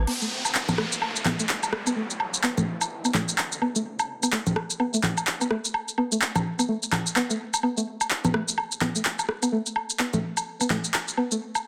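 From the opening, a twangy, string-like resonator pluck riff with a sawtooth noise layer, chorus, dub echo and a moving notch filter sweep plays over an up-front, tape-warm minimal click kit of crash cymbal, handclaps and shaker and an overdriven, layered mix of electronic woodblock, congas and rim click with dub echo, while a downlifter sounds until 3.9 s, giving this sparse, cool minimal techno excerpt at 127 BPM with swung 16ths a dense, heavily limited finish in a moderate plate reverb.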